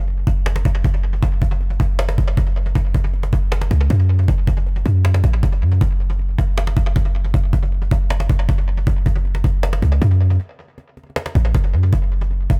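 An echo-heavy, small-room sound frames this menacing, melancholic hip hop and trap piece, cut from a longer work, where a deep, boomy, clean 808-style bass sits up front in F# minor at 157 BPM with a half-time feel, joined at 0.1 seconds by a woody, close cajon with faint snares and tape echo, before a break at 10.4 seconds.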